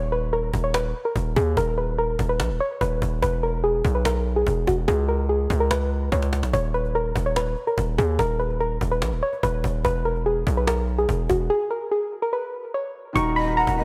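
Menacing and melancholic, this half-time trap excerpt sets a soft, round pluck melody with chorus and tape echo over a heavy, saturated 808-style bass, with a woody cajon entering at 0.5 s and a drum fill at 6.1 s, before a dark baby grand piano arrives at 13.1 s and a breathy, distant jazz flute at 13.4 s, all soaked in a dreamy hall reverb.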